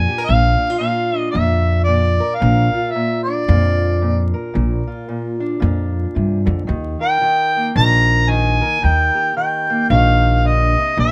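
A rough home-demo recording with vinyl crackle and light reverb carries this laid-back, rollicking acoustic country blues fragment at 112 BPM with a swung feel: a mellow, vintage-toned harmonica with light vibrato, soft attack, scooped notes and plate reverb sings the up-front jazz-style solo melody over a dark, boxy fingerpicked parlour guitar and a woody, bright pizzicato upright bass, each heard throughout the 11.1 seconds as the harmony moves from Bb to Eb at 6.7 seconds.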